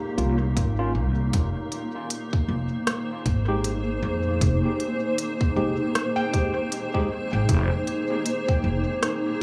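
A woody, thumpy pizzicato upright bass on gut strings sits up front in this spacious, meditative ambient dub excerpt at 78 BPM in F minor. It is joined by a tight electronic kick and a kit of smooth hi-hats and rim clicks with dub echo, all played with a 16th-note swing. A blurred, detuned granular cloud pad holds sustained chords, moving from Bbm to Fm7 at 1.3 s, while a breathy, wind-like noise texture ends at 1.4 s. In the background, a clean tine electric piano plays echoing stabs, and a ringing, nitrided-steel handpan with 12-bit sampler grit returns at 6.2 s with bright arpeggios, all within a light, small-room ambience.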